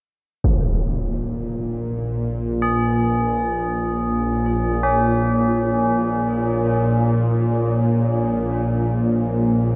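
Dark ambient drone in free time, ominous and dark: a huge, muffled impact at 0.4 s opens the excerpt as a very quiet, deep analog pad sustains chords, and from 0.9 s a tense, string-like bowed drone joins up front with vibrato and its own reverb. From 2.6 s solemn, metallic tubular bells ring out close and up front in arpeggios through a diffuse delay, all bathed in a huge ambient reverb.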